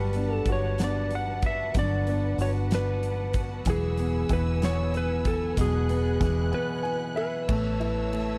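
Tender and swaying, this short cut from a longer six-eight pop ballad moves at 62 BPM in dotted quarters, with a straight feel. A dark, slightly broken-up electric slide guitar carries the melody, compressed and fingered, over a clear, polished baby grand piano that provides the accompaniment and steps forward with a fill during a break from 6.5 to 7.5 seconds. A lush, distant string section holds sustained bowed chords with vibrato high above, while a bright jumbo steel-string acoustic guitar picks arpeggios in the background, its fresh strings showing finger squeak and a slapback echo. Underneath, a round, foam-muted vintage electric bass sits up front and punchy in the low register, and a huge arena drum kit with a fat snare, bright cymbals and a pumping room sound drives the groove on kick, snare, hi-hat, ride and crash. The harmony moves from Gmaj7 to Eadd9 at 3.7 seconds before arriving on A at 7.5 seconds, all in a dry mix.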